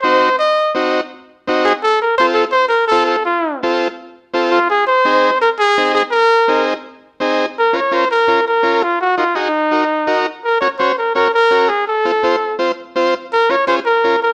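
A clear, up-front trumpet carries the melody with vibrato, a smooth top and a pop-style delivery, soloing over a driving, passionate Latin groove in a straight four. An overdriven combo organ backs it with a vintage, buzzy tone and light vibrato, also sitting up front as the harmony moves from diminished and major colours into a minor-key second half at 7.6 seconds. A dark, warm production with moderate studio reverb surrounds this short cut from a longer piece.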